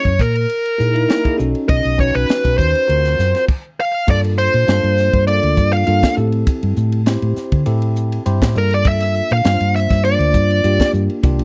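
A straight 4/4 groove at 100 BPM drives this slick, propulsive excerpt of electric jazz fusion, cut from a longer piece, with a crisp drum kit of high-tuned snare, punchy kick, hi-hat, ride and crash cymbals sounding airy and polished. A hollow-body short-scale electric bass, fingered and amped, sits up front with a dark, round tone from 0.1 s, moving between Bb1 and D3. Over this, a bell-like tine electric piano accompanies with a bright, clean phaser-tinged sound, while an overdriven, picked lead guitar carries the melody up front, its smooth, shadowy tone thickened by slapback echo. The opening passage moves through a rootless F#13, B9 and D7alt before a stop at 3.5 s, and from 4.1 s the music settles into G dorian, cycling between Gm9 and Am7. The guitar drops out at 10.9 s while the rest of the band carries on, all captured in a dry, close 1970s-style studio sound with little reverb.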